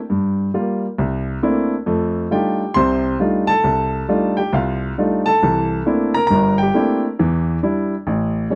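A warm baby grand piano plays a playful, swinging solo jazz passage in 4/4, moving from Gm7 through C13 and F13 to Em7 in a dry, close, 1970s-style studio sound with the piano up front, natural and short in sustain, in this excerpt cut from a longer piece.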